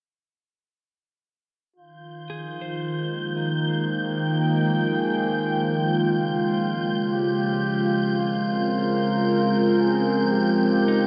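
In a straight, unhurried 4/4, this melancholic and spacious ambient fragment, cut from a longer piece, opens at 1.8 seconds with a mellow, distant flugelhorn playing a classical-style solo melody touched by tape echo. Moments later, a warbling, nostalgic pad sits up front with slow-attack sustained chords, its detuned, lo-fi tone thickened by chorus and its own reverb. Alongside it, a very quiet bowed-like drone adds a tense, string-like sustain with vibrato. Above it, a breathy, wind-like tuned noise texture hovers on a single high note. A clean, dark, picked electric guitar fades in with compressed arpeggios and tape echo, staying in the background. The harmony shifts at 6.0 and again at 10.3 seconds, and a cathedral reverb with a long tail surrounds the whole mix.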